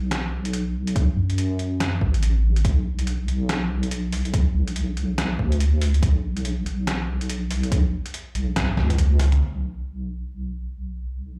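Deep dubstep excerpt with a dark, meditative half-time feel, built on a deep, sustained wobble bass with a soft triangle-and-sine tone and chorus up front, a gritty, pitched-down sampler-style kit of muffled hi-hat, snare and toms, and a punchy overdriven electronic kick, with a drum fill from 8.6 to 9.4 seconds before the bass carries on alone to the end.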